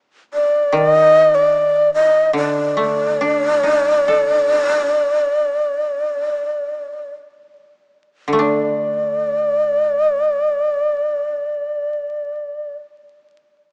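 Through vinyl crackle, light reverb and the small-speaker sound of a rough home demo, this austere, calm Japanese traditional piece in free rubato opens with a breathy, close-miked bamboo shakuhachi carrying the up-front melody with vibrato and a tongued chiff from 0.3 seconds, joined at 0.7 seconds by a dry, woody koto played with fingerpicks in quieter accompaniment, the pace slowing until 8.4 seconds before the passage moves into a new section.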